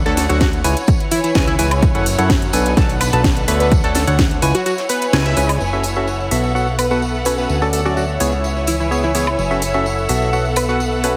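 Piano house with a bittersweet, soulful mood, built on a hollow, percussive organ stab riff with chorus and tape echo, a fat, detuned sawtooth bass, and a rich, bowed string section, all three pumping against the beat while a catchy, punchy unison lead carries the melody through tape echo. An overdriven house kit with cracking snare, metallic hats and woodblock drives the groove alongside a faint vintage tambourine and a barely audible, cloth-damped thuddy kit, while a punchy electronic kick sits up front until it drops out at 4.7 seconds, just before a band accent at 5.1 seconds. At 5.6 seconds a veiled, con sordino violin section enters in the background with sustained chords, all set in a lush hall reverb with a heavily compressed radio sound.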